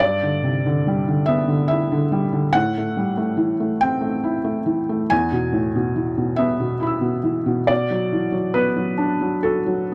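A rubato feel in 3/4 at about 70 BPM gives this short fragment of neoclassical minimalist piano a gently unhurried, breathing pulse. A felt-muted upright piano plays solo for the full 9.9 seconds, ranging from E2 up to E6, tuned to A4 = 439 Hz. Its tone is soft and mellow, with thin felt dulling each note and a short sustain that keeps the sound intimate. The harmony moves from G6 through Am and E to Bm, with the change to Bm at 7.7 seconds, lending the passage a melancholic cast. The recording is dry and close in a 1970s studio style, with little reverb, placing the piano up front as if heard from the bench beside it.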